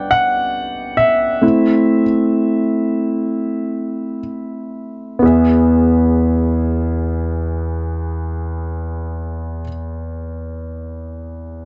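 This pop fragment, cut from a longer piece, is a melancholic, longing passage for warm concert grand piano played in free time, with the tuning set to A4 = 437 Hz. The piano carries the accompaniment across the full 11.7 seconds, ranging from a deep bass at E2 up to G5, and it sits up front with an intimate presence. Audible action noise and long sustain give the instrument a close, polished character. The opening passage, a piano solo, slows down until 5.2 seconds, moving from G to A minor, and a new passage then begins on an E chord. A light reverb surrounds the piano, and the overall production is dark and warm, rolled off above 7.8 kHz.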